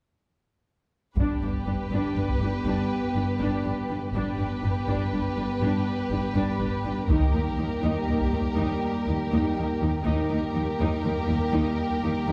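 At 1.2 s, a burst of hard-stick taiko opens this heroic, adventurous cinematic build-up in 12/8 at 81 BPM, as the strings and French horns enter together. The harmony shifts from G to Eb at 7.1 s, where the taiko returns. Expressive, lush violins with vibrato carry the melody over a smooth second violin line, dark, woody violas, a clear double bass and a very quiet, focused cello section, while a mellow horn section holds sustained chords in the background, all set back in a wet scoring-stage reverb that gives this cut from a longer piece an epic sweep.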